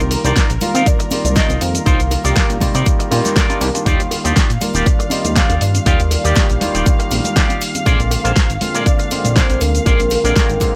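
Sleek and cosmic, this nu-disco excerpt rides a swung 4/4 groove of punchy, up-front electronic kick, a pop kit with fat snare and warm hats, background bongos, congas and cabasa, and a glossy chorused synth bass under a barky, overdriven tine electric piano, a twangy envelope-filtered guitar riff with 12-bit sampler grit, veiled con sordino violins and a round, octave-layered synth lead colored by chorus, phaser and tape echo, moving through Cm11, Ebmaj9 and Bb7 in a dry, close sound.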